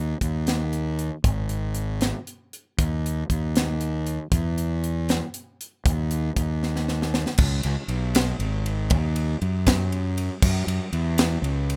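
Intricate and wistful, this short cut from a longer math rock and midwest emo piece moves in 6/8 with a straight feel. A fingered electric bass opens at the very start, its fuzz overdrive giving a dark, round and punchy tone that sits up front in a low register. The acoustic fusion drum kit joins at 0.2 seconds, sounding crisp, airy and polished, with a high-tuned snare, a tight kick, hi-hat, ride and crash cymbals, all placed close to the listener. A drum fill from 6.6 to 7.4 seconds carries the music out of its opening section and into a second passage that runs to the end at 11.8 seconds. The mix is dry and rough, with the plain, immediate feel of a home demo.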